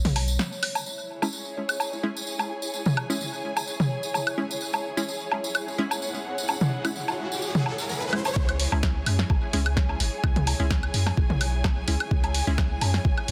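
An up-front electronic kick drum with a soft, tape-warm thump arrives at 8.4 seconds, anchoring the drop in this sparse, cool minimal techno cut in C# minor at 128 BPM with a light swing on the sixteenths. It joins a deep, punchy sine sub bass with a pitch-drop attack and sidechain pumping, and an analog drum machine whose punchy snare and hi-hat carry the groove. Overdriven, layered electronic toms and woodblock with digital delay run throughout, while a jingly acoustic tambourine heard in a small room plays only before the drop. From 0.9 seconds a distant, woody string section with lush vibrato settles on a C# minor chord and pumps with the sidechain. Crisp, detuned wavetable chord stabs with a filter pluck and delay flicker through, and a dark, pulsing triangle pad with chorus and built-in reverb sits in the background until the drop. An electronic riser from 5.5 seconds builds toward the drop, and the whole is set in light digital ambience with a dense, heavily limited modern master.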